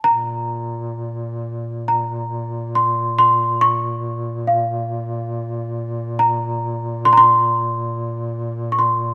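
Mournful and solemn, this brief excerpt of a rubato Caucasian folk lament sets a worn, bell-like celesta, delicate, slightly out of tune and up front, singing a high melody over a low duduk drone on Bb2 that carries vibrato and scooped notes, all in light reverb.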